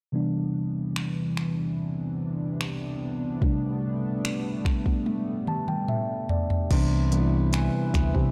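Contemporary R&B with a dreamy, romantic mood, where a mellow tine electric piano sits up front playing Cmaj9 and Am11 chords over a shimmering, retro pulse-width pad that pumps from sidechain compression. A soft, electronic drum kit with finger snaps, smooth hi-hats, crash and toms enters at 1.0 seconds, and drums and electric piano each play a fill from 5.1 seconds. At 6.7 seconds a punchy, round FM bass with tube saturation and a small, dark nylon-string guitar playing fingerpicked arpeggios through tape echo join, all in a dry, gritty recording cut from a longer piece.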